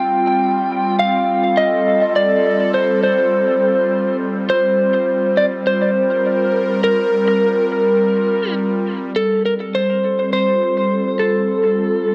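A swung sixteenth-note feel at 103 BPM in 4/4 carries this deep, meditative ambient dub fragment, cut from a longer piece, as it moves from F to Gm7 and back to F at 9.2 seconds. Up front, a slightly broken-up, compressed electric slide guitar sings the melody through a dub echo, while a breathy, detuned pad with a nasal edge, slow attack and long release holds sustained chords under a chorus shimmer. At 9.2 seconds a filter sweep moves across the pad, and a moderate plate reverb casts a spacious, echo-soaked atmosphere over the mix.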